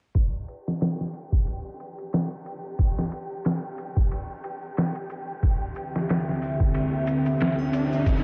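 Soaked in a huge ambient reverb with vinyl crackle and a filter sweep running throughout, this smoky, melancholic trip hop excerpt at 91 BPM rides a swung, gritty, pitched-down sampler drum kit with a thumpy kick and tape-warm grain up front, very quiet acoustic maracas and triangle, and an airy, breathy wind-like texture from 0.7 seconds, before a deep, detuned analog pad with sampler grit enters at 5.9 seconds and an electronic riser rises in the background from 6.5 seconds.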